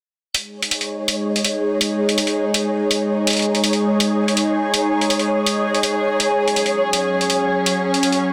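Set in a moderate, huge ambient reverb and densely limited, this dark, cinematic half-time drum and bass excerpt sets a tense, detuned, string-like bowed drone with phaser and vibrato under a filter sweep, moving from a G#5 chord to F#5 at 6.2 seconds, beside a gritty, pitched-down, tape-tinged electronic hi-hat up front and a quieter flickering granular texture.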